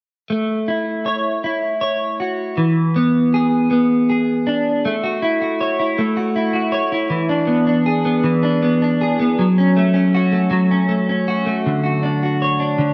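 A clean electric guitar opens at 0.3 s, double-tracked and placed up front, its picked tone scooped and compressed as it carries the accompaniment between D3 and C#5. This heartfelt, swaying pop piece moves in a slow 6/8 at 53 beats per minute counted in dotted quarters, with a straight feel in A major and tuning set to A4 = 438 Hz. The opening passage rocks between A6 and E7. At 4.8 s a second passage begins, repeating that pair before moving through F#m and settling on Dmaj7. A lush hall reverb with a 2.1-second decay bathes the guitar in a wet, spacious glow, and the overall production leans dark and warm. The fragment, cut from a longer piece, ends at 12.9 s.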